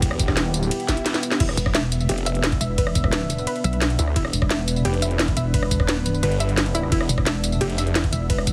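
Dark technical drum and bass at 174 BPM in E phrygian, mechanical and futuristic, where a snarling, overdriven saw bass and an up-front electronic kit with cracking snare, metallic hats and a knocking kick drive under a moody chorused analog pad, joined by a brief electronic swell and drum fill around 0.8 to 1.4 seconds before a warbling, lo-fi pluck arpeggio with delay and a pulsing, heavy wobble bass enter at 1.4 and 1.6 seconds, all squeezed into a heavily compressed radio-like sound with light reverb.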